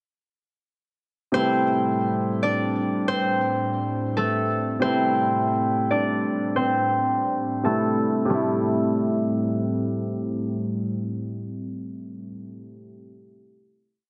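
Drill hip hop at 138 BPM in a half-time feel, this ominous, menacing A minor piece sets an up-front, fingerpicked concert harp melody with tape echo, looping and doubled in octaves, over held open-voiced chords from a baby grand piano with long sustain and a warbling, nostalgic lo-fi pad with chorus, all bathed in lush hall reverb under a low-pass filter, with a filter sweep through the breakdown from 1.3 to 8.3 seconds before a final Am7 chord, and the piano ringing on alone until 14.1 seconds.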